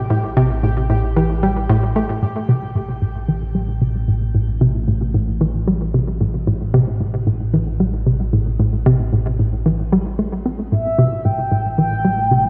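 A bouncy, hollow square-wave pluck riff sits up front through cassette-tape grit, tape echo and shimmer reverb in this cosmic, mysterious excerpt of sequencer-driven ambient space music, resting on an evolving, chorused analog drone in the bass, with a dark, pulsing gated texture ending at 2.2 s as a filter sweep begins on a synth arpeggio sound, and a round, horn-like synth lead with vibrato arriving at 10.7 s, all set in a dark, wet digital ambience.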